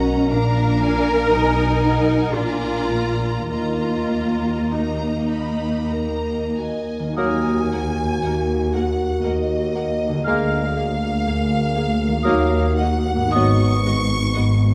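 Lush bowed violins in two lines, violas, rich cellos and double basses sliding with portamento open this serene, rubato romantic orchestral passage in three over a bright, ringing harp playing arpeggios, until at 7.2 s a hollow flute, oboe, clarinet and dark bassoon join with punchy French horn chords, all set in a moderate scoring-stage reverb with a warm production.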